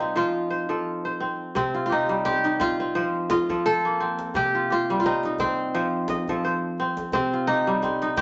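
Two fingerpicked kora parts open this flowing, hypnotic fragment of traditional West African string music at 0.0 seconds: one carries the melody in the middle register while the other spins ringing arpeggios across a broader span beneath and above it. Both koras sit up front with a bright, crisp acoustic tone, moving at 86 BPM in 4/4 with a light swing on the sixteenths in C dorian, tuned to A4 = 436 Hz. The harmony rocks steadily between F and C minor, giving the music its circling, trance-like pull. At 1.6 seconds a djembe joins in the background, its warm, deep body edged with metal rattles and the feel of a small room. A wet studio reverb surrounds the recording, and the top end is gently rolled off, lending the sound a soft, rounded glow until it cuts off at 8.2 seconds.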